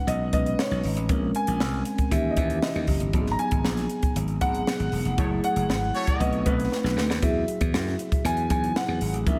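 Upbeat and glossy, this polished 1980s jazz-funk pop excerpt moves at 117 BPM in a straight 4/4, with a boxy, long-sustaining grand piano carrying the melody through analog delay over a mellow tine electric piano with analog chorus, a growly, up-front slap bass and a crisp fusion drum kit with a high-tuned snare and punchy kick, while a smooth, lightly vibrato horn section slips in from 5.2 to 6.3 seconds during a band accent capped by a drum fill, all bathed in a dreamy hall reverb over rich chords moving from B69 to Emaj9.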